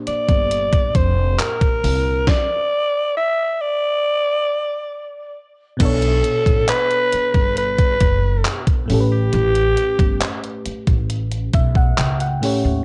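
A raspy, gritty alto saxophone carries the melody up front in this tender, dreamy contemporary R&B fragment, its pop-style solo line touched with vibrato, a smooth top and a digital delay. Beneath it, a glassy FM electric piano with a bell-like attack and a chorus effect supplies the accompaniment, while a woody pizzicato upright bass anchors the low end. A detuned 8-bit drum machine sits up front with a thumpy kick, a medium-tuned snare, hi-hat, handclaps and crash cymbal, overdriven and re-recorded in a large room for a sampler-style grit. The band drops into a stop from 2.3 to 5.8 seconds before moving through minor-seventh and ninth chords, and the electric piano closes with a fill from 11.1 seconds. Light reverb and the worn, warbling pitch drift of old cassette tape color the whole recording.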